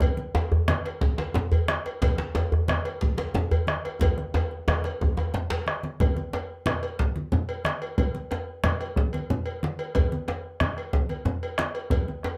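A tight, cracking djembe sits up front from 0.3 s until 5.7 s, overlapping a drum fill that begins at 4.0 s, in this earthy, driving West African traditional drum ensemble excerpt at 121 BPM in 12/8, where a round, vintage-toned bombo also sits forward, bright, low-tuned congas struck with hard hands and a deep second djembe in the background fill out the texture, and a metallic cowbell rings from a distance, with moderate small-room reverb on the mix.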